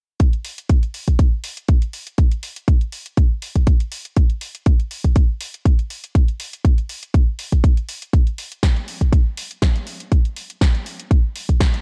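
A punchy, layered electronic kick drum sits up front and drives this groovy house loop at 121 BPM in 4/4, with a light 54% swing on the sixteenths. Alongside it from 0.2 seconds, a house drum kit adds a punchy snare and bright hi-hats, which pump through sidechain compression. The kit sits well behind the kick in the mix, leaving the low end firmly in charge. The production is dark and warm, wrapped in a digital ambience that gives the beat a nostalgic air. This short cut from a longer piece holds a single section throughout, with both parts playing until about 11.8 seconds.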